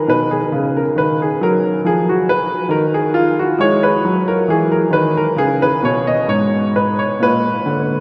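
A clear, present solo grand piano opens this flowing, introspective baroque-style classical suite movement in an unhurried rubato 4/4, its harmony moving from B at 0.1 seconds to E at 3.6 and Bb at 7.2, set within a long, wet cathedral reverb heard from further back in the room, in a brief fragment cut from a longer piece.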